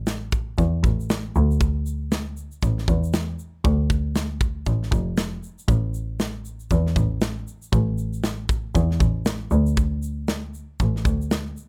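A bowed double bass, nasal and earthy with a light vibrato, opens this tender, wistful acoustic pop excerpt at 118 BPM with a 16th-note swing, joined almost at once by an up-front studio drum kit of tight kick, medium-tuned snare and shaker in a small room, all captured dry and close in crisp detail.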